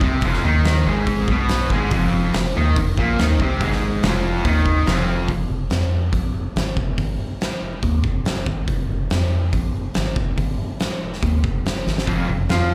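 A bright, double-tracked fuzz guitar leads this raw, menacing garage rock clip, picking a distorted riff in F minor that sits up front before dropping out at 5.3 seconds. Underneath, a dark, organ-like FM bass holds a low F minor line throughout, its hollow, percussive notes striking with a fast attack and then decaying, roughened by overdrive. An oversized, low-tuned acoustic drum kit drives a straight 4/4 at 142 BPM with a boomy kick, a fat snare and hi-hat, its gritty, saturated sound pumping in a big room. Once the guitar falls away, bass and drums carry the second passage alone until a drum fill at 11.9 seconds, after which the fuzz riff returns at 12.1 seconds. The whole thing is heard live through a club PA with only a little reverb, and it is cut from a longer performance.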